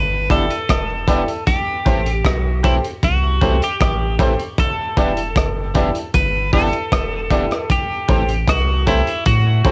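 A dry home cassette recording, cut from a longer piece, carries a laid-back, meditative roots reggae groove in which a bright, compressed twelve-string electric guitar picks the up-front melody over a deep, round dub sub bass from the start, joined at 0.3 s by a slightly broken-up, twangy background electric guitar with tape echo, woody upright piano stabs, and a dark, saturated, gritty breakbeat kit of hi-hat, tight kick and rim click, all moving between Em7 and Am7.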